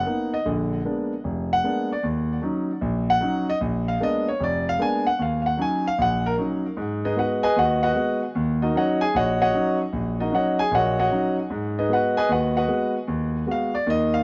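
A solo concert grand piano opens this smoky, moody swing jazz fragment, its deep bass, open tone and long sustain placed up front in a dry, close 1970s-style studio sound touched by tape echo and studio reverb, as it moves through Bb7b9, Ebm7 and Abm7 chords across two matching passages spanning about 14.2 seconds in total.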